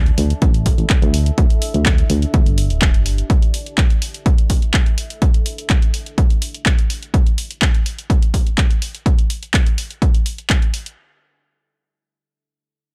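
Piano house at 125 BPM in a straight 4/4, this short cut from a longer piece feels joyful and euphoric, riding a bright chord cycle of suspended Asus2, Dsus2 and Gsus2 shapes. A punchy, round FM bass sits up front with a fast attack and mellow decay, pumping against the kick under a filter sweep until it drops out at 3.2 seconds. Above it, a deep, moody pad built from detuned sawtooth unison, sine sub octave, wave-folding and ring modulation carries a slow attack, chorus and its own reverb, pumping too as it fades out by 7.1 seconds, where the harmony falls away. An analog drum machine supplying handclaps and hi-hat opens the groove, soon joined by a tape-warm electronic kick driving from the front of the mix, both re-recorded in a small room. The overall sound is dry and gritty, with hardware character and transformer saturation giving the beat a solid, physical edge.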